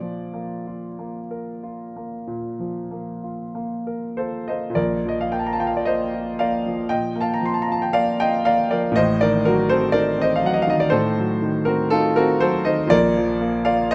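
Close, detailed miking places a clear, smooth, vintage-toned grand piano up front within a moderate concert-hall reverb in this dreamy, serene romantic nocturne for solo piano, cut from a longer piece: it moves in a rubato 4/4 at 45-63 BPM in Bb major, spanning A1 to C6, restating its opening phrase at 4.8 s and shading from Bb to Adim7 at 9.0 s before settling back on Bb at 12.9 s.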